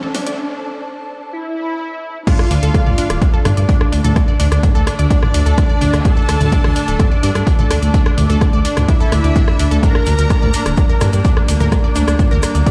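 A straight 4/4 pulse at 127 BPM drives this cinematic melodic techno excerpt in D minor, tuned slightly low to A4 = 436 Hz. It opens with a short build-up and break over a Dsus2 chord: a drum fill from the techno drum kit, a filter sweep, chamber strings holding sustained chords in the background, a round, detuned analog pluck spinning arpeggios through chorus and digital delay, and a brief blurred granular cloud pad. A menacing, detuned saw bass with tube saturation and a filter swell sits up front. A thick unison lead carrying the melody with vibrato joins at 1.3 seconds. The drop lands at 2.3 seconds with a punchy, up-front electronic kick and a lush symphonic violin section adding a second line with digital delay, moving to Dmadd9 and later Gm/D. The kit's tape-toned hats, rim clicks, crash and toms push alongside the kick, a grainy tube shaker slips in at 9.8 seconds, and sidechain pumping makes the bass, strings, pluck, lead, violins and pad breathe with the beat inside a big, bare-room reverb.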